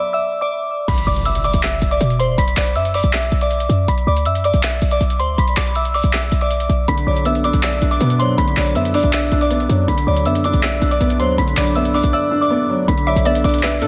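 This brooding, menacing trap cut from a longer hip hop piece runs at 160 BPM in a half-time 4/4 feel, set in B phrygian over a B minor chord and tuned slightly flat to A4 = 439 Hz. A glassy, crystalline FM synth bell carries the melody up front, bright and quickly decaying with a long release, colored by chorus, phaser, low-pass filtering and digital delay. After a brief stop, a short, punchy 808-style bass with a sine body and noise layer hits at 0.9 seconds alongside a booming, overdriven analog drum machine with metallic hi-hats, handclaps and crash cymbal, while an electronic impact marks the entry. A soft, felt-muted upright piano with audible action noise is heard only at the very start, then returns at 6.9 seconds to add intimate, mellow accompaniment through a low-pass filter. At 13.1 seconds a hollow, bouncy, detuned square pluck with a sub octave and chorus adds a second line. 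Light reverb and digital ambience surround a dense, heavily limited modern master.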